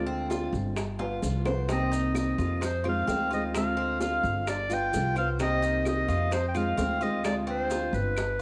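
A straight, danceable son groove in 4/4 sets the pace, with tight, high-tuned bongos and grainy, distant maracas joining at 0.3 s, a drum fill between 1.0 and 1.7 s, and very quiet, woody claves entering at 0.8 s. Up front, a bright classical-style clarinet carries the solo melody with a cassette-tape tint, over a thumpy pizzicato upright bass, a dark fingerpicked steel-string acoustic guitar with audible finger squeak, and metallic picked arpeggios from the double-strung Cuban tres. The nostalgic home-cassette sound, softened at the top and bathed in moderate spring reverb, circles through Dm7b5, G7, Cm7 and Fm7 in this short excerpt cut from a longer piece.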